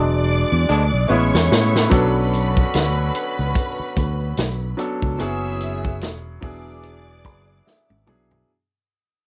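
Lush 1970s-style soul with a bittersweet, silky mood, cut from a longer piece, in which a clear, open concert grand piano with deep bass accompanies a distant, bowed string section carrying a soft-attack second line with vibrato and portamento, while tight, warm horn stabs add vintage jazz colour and a round, up-front fingered electric bass anchors the swung groove; a punchy, natural-sounding drum kit enters at 1.3 seconds with fills, the strings, piano, horns and drums carry cassette-tape character within a light-reverb home cassette recording, the music fades out from 1.9 seconds, and the piano closes with a fill at 7.2 seconds.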